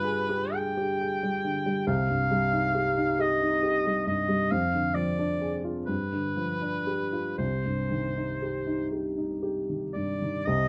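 A dark, mellow grand piano and a clear oboe with light vibrato begin together in this melancholic, elegiac passage of a romantic classical duo, cut from a longer piece. The oboe sings the melody in a roomy classical style over the piano's accompaniment, moving with a 6/8 rubato through a brief progression from G7b9 to Cm, Ddim/F, G7 and back to Cm. A moderate studio reverb gives the pair a sense of space across the 10.7 seconds.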